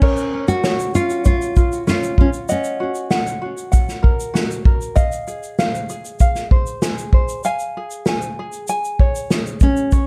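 An unplugged drum kit sits up front in this wistful, tender acoustic pop fragment, played with bundle sticks in a roomy studio space that gives it a distant character, with dark cymbals, a medium-tuned snare, a tight kick, a shaker and crash cymbal in a straight 4/4 feel. A nylon-string guitar carries the melody with a full-bodied, deep classical tone, fingerpicked and up front with a touch of delay; it plays from 0.0 to 3.1 seconds, drops out, and returns briefly at 9.6 seconds. Beneath it, a tenor ukulele provides bright, light fingerpicked accompaniment throughout. The harmony moves through Bbm, Ebm, Fm7 and Db, giving the passage a gently melancholy pull. Light reverb and a dark, warm production wrap the parts together in an intimate, unhurried sound.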